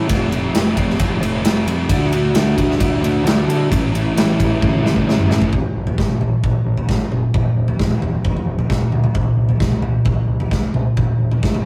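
A thick, dark fuzz guitar leads this anthemic, restless stretch of quiet-loud alternative rock, its double-tracked riff sitting up front and moving through F, D and A chords in a straight 4/4. Beneath it, a growling picked electric bass with a round, overdriven tone stays in the background. A big acoustic rock kit with a punchy kick, a medium-tuned snare, toms and bright ride cymbal fills a large room and sits up front. A drum fill from 4.6 to 5.5 seconds closes the first section, after which the guitar stops and the chords fall away, leaving only bass and drums until the cut. The rough rehearsal-room recording carries a saturated glow and a light reverb, giving the fragment a raw, live-in-the-room feel.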